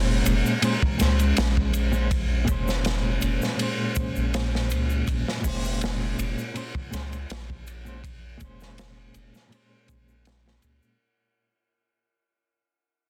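Melancholic and brooding, this trip hop passage moves at a straight 81 BPM in 4/4, sitting on a single Bbm9 chord in Bb minor and fading out across its full 11 seconds as part of a longer piece. A clean, fingered electric guitar carries the accompaniment from the start, its compressed tone shaded by tremolo, a low-pass filter and tape echo. Underneath, a soft dub sub bass holds round, sustained notes with a fast attack, the loudest part in the mix. Entering at 0.3 seconds, a crunchy breakbeat kit sits up front with a tight kick, medium-tuned snare, hi-hat and dark ride cymbal, its saturated, gritty sound rolled off at the top, while a ringing egg shaker played with soft hands stays in the background. A detuned, mellow ambient pad with slow attack and long release drifts behind everything from 0.2 seconds, its sustained chords bathed in chorus and reverb, though the overall recording is dry, dense and heavily limited.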